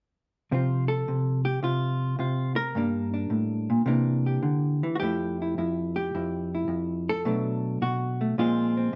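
Warm and playful, this short solo jazz piece is cut from a longer performance and moves at 107 BPM in 4/4, with a swung eighth-note feel and a loose, rubato sense of time in F major. A single hollow-body electric jazz guitar carries everything from 0.5 to 9.0 seconds, fingered and clean, with a dark, compressed tone that sits up front. Its range spans F2 to Bb4. The first section sets out F/C, Gm and C9, and from 5.0 seconds a second section moves through Fmaj9, Bm7 and Bbsus2. A wet studio reverb gives the guitar a modest room around it, and the sound is that of live playing in one space.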